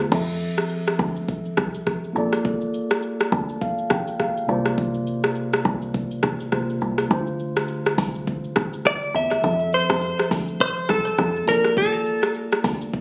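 Afrobeats at 103 BPM in F major with a swung sixteenth feel, this joyful, sunny excerpt sets a mellow tine electric piano (with a fill from 3.0 to 4.8 seconds) over a woody, punchy log drum bass and an electronic afro-pop kit of deep kick, metallic hats, rim click, shaker and crash, moving through Fmaj7, Bbmaj7, C7sus4 and Dm7 before a clean, picked electric guitar melody with digital delay enters at 8.9 seconds, all heard as if captured on a phone in a club-like room.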